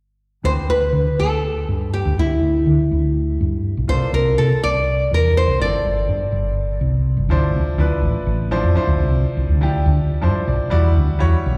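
Funky and driving, this fragment of a longer jazz piece moves at 245 BPM in a straight 7/8 in D minor, turning to D dorian at 7.3 s, as a punchy, round, hollow-body fretless electric bass with lush chorus sits up front beneath a bright, fingerpicked nylon-string guitar melody with slapback and tape echo that ends at 6.8 s, while a brilliant, open baby grand piano with slapback echo provides quiet accompaniment and adds a fill at 10.0 s, all heard as a live gig through the venue's PA in a recital hall reverb.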